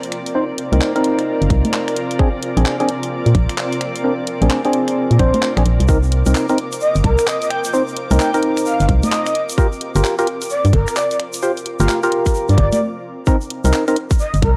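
A swung two-step garage groove at 130 BPM in C minor, with a tight, up-front electronic kick entering at 1.5 seconds over a garage kit of warm hats, congas, finger snaps and handclaps, sets a late-night, soulful mood in this short cut from a longer piece. A dark, hollow FM bass and mellow, percussive organ stabs carrying tape echo and a filter sweep drive the Cm7, Bb9 and Gm7 changes, while an airy background pad and a blurred, evolving granular cloud pad pump against the beat, joined by a grainy tube shaker. From 6.8 seconds a breathy, flute-like lead with vibrato and tape echo sings on top, and the airy pad stops at 12.8 seconds, all within a gritty, cassette-tinged hardware sound with light reverb.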